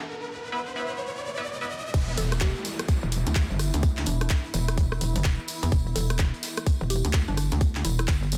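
Bass house with a bouncy, swaggering swing, cut from a longer piece: it opens on a short build-up where a metallic, distorted wobble bass and an electronic riser and downlifter sit under a nasal, band-passed chord stab given a filter sweep, chorus and delay. At 1.9 seconds the drop lands, with a tight, up-front electronic kick, a garage drum kit of crash, handclaps, hi-hat and rim click, a very quiet vintage brush kit with snare and hi-hat, and a jingly, close tambourine. Behind them an evolving, warbling sawtooth pad holds sustained chords while a woody, mellow mallet-like synth pluck with phaser and delay carries the melody in the background, all pressed into a dense, heavily limited modern master with small room ambience.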